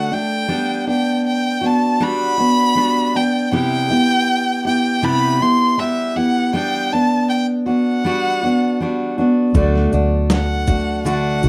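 A moderate studio reverb surrounds this short acoustic pop excerpt, with a tender, wistful mood and a gently swung feel. From the start, a fingerpicked steel-string acoustic guitar sits up front with a full-bodied, fresh-stringed tone, while a single bowed violin carries the melody high above it, rich, smooth and even, with vibrato. The harmony drifts from Gmaj7 to Cmaj7 and back before turning to D. At 9.5 s the band joins: a dark, round, foam-muted electric bass; a dusty, compressed sampler-style drum kit with a thumpy kick, a medium-tuned snare and shaker; and a worn, reedy electric piano, lightly overdriven and slightly out of tune, tucked in the background. All parts play through to the cut at 11.5 s.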